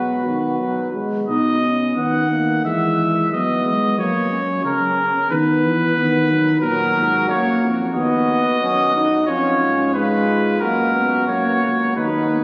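A classical imitative canzona for brass ensemble in B major at 90 BPM, this contemplative, serious passage is cut from a longer piece. A clear trumpet carries the melody up front over a mellow trombone and a mellow tuba bass with light vibrato, while a dark trumpet sounds briefly at the start, then returns at 6.6 seconds with its second line. The players sit in a wet church reverb captured on a phone in the room, and the harmony moves from B through E and F# before closing on C#/E# and F#.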